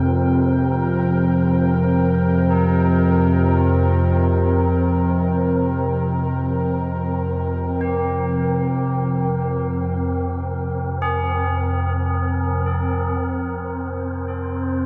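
Drenched in huge ambient reverb, this ominous dark ambient drone piece sets a warbling, detuned analog drone up front beneath a bright, resonant sweeping pad that holds sustained chords until 13.2 seconds, while a breathy, wind-like noise texture hovers throughout and solemn, metallic tubular bells enter at 2.5 seconds with delayed arpeggios.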